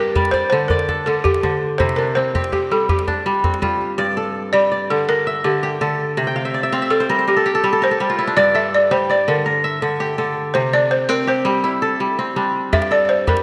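Flowing and hypnotic, this West African traditional piece in 12/8 sets a bright, fingerpicked kora, ringing and crisp up front with its arpeggios, alongside a woody, buzzing balafon melody played with rubber mallets. A tight, cracking djembe enters at 0.2 seconds and falls away before the balafon takes a solo from 4.0 seconds, returning only briefly near the close, while the kora adds a fill around 6.3 seconds. The dreamy mix is soaked in lush hall reverb, giving this excerpt a spacious studio glow.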